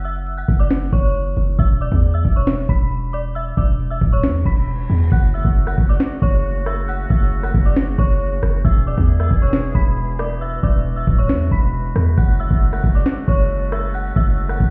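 Muffled as if heard through a wall, with a stony room echo, this brooding, eerie half-time trap excerpt in F# minor at 136 BPM sets a metallic, inharmonic FM bell melody with chorus, tremolo and delay over a punchy, heavy 808-style bass and an up-front, tape-toned trap kit of knocking kick, sharp snare and metallic hats, as a background reverse cymbal at 4.4 seconds leads into a close-miked woodwind section holding vibrato-laden chords from 5.1 seconds, and the hi-hats drop out from 10.4 to 12.2 seconds.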